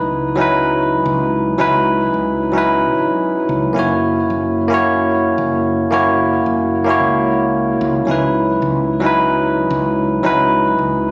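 Sunset chillout at 111 BPM in a straight 4/4, this warm, wistful excerpt sits in C# dorian and moves from C#m11 to F#7 at 3.8 seconds before returning to C#m11 at 8.1 seconds. A bell-like, bright tine electric piano plays the chords up front through a delay, while a mellow, round fretless bass holds a dark foundation further back in the mix. The sound has the closeness of a phone recording in a room, wrapped in a long, wet plate reverb and compression.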